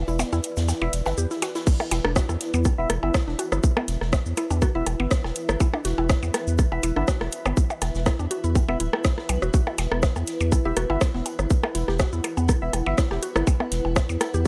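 Swung sixteenths drive this sparse, hypnotic minimal techno excerpt, where a short break of saturated sub bass, a blurred granular cloud pad, a woody mallet-like synth pluck with chorus and delay, airy shaker and snare, a garage drum kit with metallic hats, overdriven electronic percussion blips and rim click, and a hollow organ stab with lush chorus and dub echo gives way at 1.7 seconds to a tight, up-front electronic kick, while sidechain pumping runs through the bass, pad, pluck and percussion throughout.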